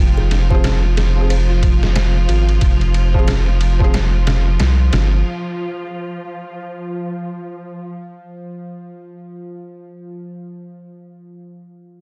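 Heard through a dense, heavily limited modern master with studio reverb, this brooding, melancholic trip hop fragment sits in F minor at 91 BPM, with a swung 16th-note feel. A thumpy, gritty sampler-style drum kit, compressed and pitched down with a medium-tuned snare and ride cymbal, stands up front beside a round, deep analog bass with tube saturation. The bass drops out at 5.2 seconds, just after the drums, as the harmony gives way from F minor. A lush, bright string section sustains chords through a low-pass filter sweep, while a delicate, tinkling music box plays brief arpeggios in the background, filtered and trailed by tape echo. A felt-muted upright piano adds soft, intimate accompaniment with audible action noise, harmonic tremolo and tape echo. Entering at 1.2 seconds, a tense, string-like drone with a slow attack, long release, vibrato and its own reverb outlasts the other parts, leaving a suspended, uneasy close.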